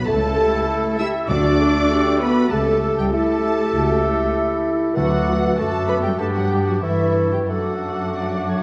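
Dark, distant French horns hold sustained chords at the heart of this graceful, cheerful classical-period orchestral passage, played with a rubato feel and cut from a longer piece. Muted violins carry a veiled, con sordino melody with a lush second violin line beneath, while muted violas accompany from the background and muted cellos and double basses anchor the bass. A clear oboe, a background clarinet, a hollow, airy flute section and a roomy bassoon add gentle lines, and soft-mallet timpani sound a round D from 1.3 to 5.8 seconds, all bathed in wet scoring-stage reverb.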